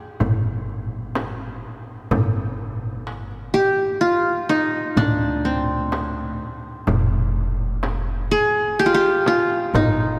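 In a straight 10/8 metre, this hypnotic, soulful excerpt from an Arabic maqam ensemble opens on the up-front, bright-edged, plectrum-plucked qanun carrying the melody, joined at 0.2 s by woody, thumpy pizzicato upright bass, a crisp, saturated metal-shell darbuka set in the background and a small, close frame drum played with soft hands, heard within the long cathedral reverb of a church or concert hall.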